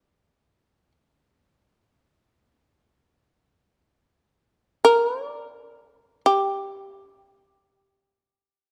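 Japanese traditional chamber music in free time, this meditative, austere excerpt features a solo acoustic shamisen, bright and buzzing with a percussive plectrum attack, placed up front in a close, detailed recording with light reverb as the playing slows down across its 8.7 seconds.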